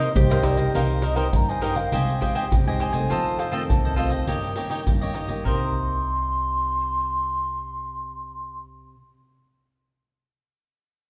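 A mellow, hollow baroque flute leads this lively, nostalgic samba-choro clip in C minor at 102 BPM, its airy, distant tone carrying the melody with vibrato over a crisp picked cavaquinho, a fingerpicked classical nylon-string guitar and a woody pizzicato upright bass, while a round, double-strung mandolin adds a brief second line that stops at 0.7 seconds. Close, dry hand percussion of egg shaker, pandeiro, tamborim and a deep surdo sits up front from 0.2 to 5.6 seconds as the harmony moves from Cm7 through Abmaj7/C, F7 and Eb7/G before returning to Cm7. The ensemble sounds in a wet recital-hall space with a lingering reverb, and the clip is cut from a longer piece.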